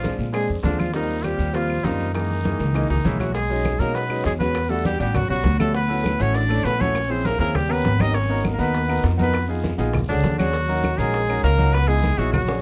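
A growly, thumpy pizzicato upright bass sits up front in this sunny, lively Afro-Cuban jazz excerpt, under a clear, vintage-toned trumpet melody joined by a second line from a breathy tenor saxophone with vibrato in the background, with a clear, natural baby grand piano comping and adding a fill from 2.9 s, while thick-skinned congas, tight high-tuned bongos, woody claves, a raspy guiro and grainy maracas keep the percussion low in the mix, a drum fill at 2.4 s leading into the second section at 3.4 s, all in a close, dry and detailed sound.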